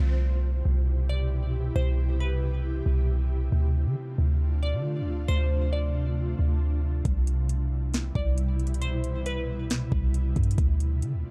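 An up-front 808-style bass, deep and boomy with a fast attack and dark decay, anchors this dreamy, floating stretch of atmospheric cloud-rap at 136 BPM in a half-time 4/4 feel, cut from a longer piece in C major. Beneath it, an ethereal, airy pad holds sustained chords through the whole 11.3 seconds, its detuned unison layers softened by ensemble chorus, built-in reverb, tremolo and sidechain pumping, moving between Cmaj7 and Dm7. From 1.1 seconds a glassy, crystalline wavetable pluck traces a high melody, its ring-modulated tone carried on chorus and tape echo. At 7.1 seconds a smooth, overdriven R&B drum kit arrives up front with a knocking kick, sharp snare and metallic hats. The production feels dark and warm, with a digital ambience surrounding the parts.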